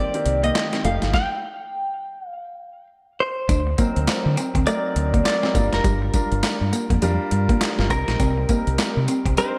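Punchy and slick, this excerpt of new jack swing R&B at 102 BPM with a swung 16th feel sets an up-front, clean direct electric guitar melody in lush chorus over clear concert grand piano accompaniment with audible action noise, a background semi-hollow guitar riff in analog chorus, a gritty, thumpy sampler-style drum kit of kick, snare, hi-hat, handclaps and tambourine in gated reverb, a round, dark fingered bass, and a very quiet, distant cowbell, with a stop from 1.1 to 3.5 seconds in a bright 1980s-style digital production moving from Cm7 and F9 through D7b9b13 and Gm7 back to Cm7.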